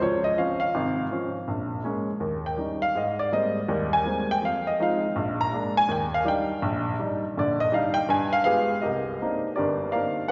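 A woody, polished upright piano plays alone up front in this relaxed, playful solo jazz fragment from a longer piece, swinging in 4/4 at 163 BPM with a rubato feel in Eb major and moving through rich seventh and ninth chords such as Dbmaj7, Abmaj9 and a closing Cm9, before shifting to a new section at 8.8 seconds, all bathed in the lush reverb of a concert hall.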